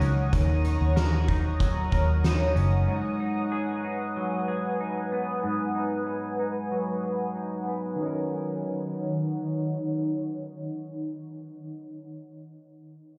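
Ethereal and hazy, this dream pop fragment in Eb minor drifts at 94 BPM over Ebm7 and Abm7 chords, with a shimmering, granular ambient pad holding slow-attack chords and twangy, picked clean electric guitar arpeggios trailed by digital delay, while a round, foam-muted vintage bass and an oversized, low-tuned drum kit with a punchy kick and gritty, fat snare drop away by 2.9 seconds, leaving the pad and guitar floating through a filter sweep and a huge stone-room reverb until the guitar stops at 12.1 seconds.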